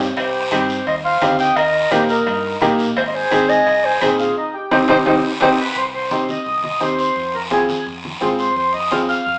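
A drum fill opens this fiery, passionate cumbia as a clear, slightly detuned upright piano and a dark, punchy fingered electric bass lay down the accompaniment. At 0.2 seconds a warm, classical-style clarinet melody enters with a reedy accordion second line, raspy guiro, low-tuned congas, and ringing vintage cowbell and timbales in the background. During a band accent, the clarinet, cowbell and timbales stop at 5.5 seconds, and from 5.8 seconds the airy accordion takes a solo over piano, bass, congas and guiro, all captured live in one room with a wet studio reverb and a small-speaker sound.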